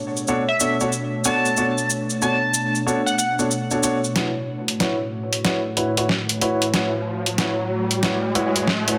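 Swung sixteenths at 93 BPM in 4/4 drive this swaggering, funky glitch hop fragment. It opens on Bm9 with a warbling, nostalgic tape-like pad, a grainy cabasa, polished grand piano stabs roughened by 12-bit sampler grit, low-pass filtering and tape echo, and an edgy, tearing sync lead melody with vibrato that stops at 3.3 s. At 4.2 s the harmony shifts to A6 and a build-up begins: a pitched-down, compressed boom bap kit of hi-hat and snare plays a fill, the piano takes a filter sweep, and an electronic riser enters at 5.2 s, all set in a lush hall reverb with a dense, heavily limited master.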